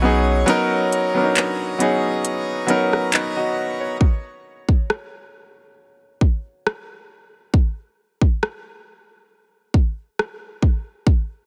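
A lightly swung sixteenth-note feel in 4/4 sets up a slow, dreamy and tender contemporary R&B groove, cut from a longer piece. A bright, polished concert grand piano with deep bass and short sustain carries the accompaniment up front over a Bmaj9 chord. Beneath it, a plenum pipe organ with chiff and baroque voicing holds full sustained chords until 4.0 seconds, when the harmony falls away. From 0.5 seconds, an electronic trap kit sits close and dry with a hard-clipped kick, crisp hi-hats, handclaps and rim clicks, and it carries on after the piano stops at 7.6 seconds.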